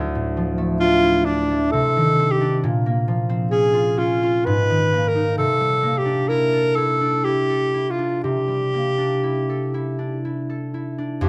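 A clear alto saxophone carries the melody in classical style with a light vibrato, entering at 0.8 seconds over a concert harp that has already begun at 0.0 seconds. This dreamy, luminous impressionist duo moves in a rubato 3/4, the harp's fingerpicked, ringing accompaniment drifting through a chain of minor add-nine chords before settling on a C13. Both instruments sit up front, captured by close, detailed microphones within a moderate recital hall reverb, in a short passage cut from a longer piece.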